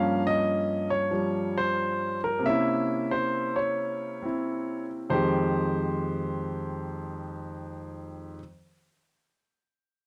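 Solo jazz in F minor at 90 BPM with a swung feel and a late-night, smoky mood, this brief cut from a longer piece features a concert grand piano alone, intimate and up front with deep bass, long sustain and audible action noise, moving from Gm7b5 to C7b9 at 2.4 seconds before arriving on Fm9 at 5.1 seconds, all captured in a dry, close 1970s-style studio sound with light reverb.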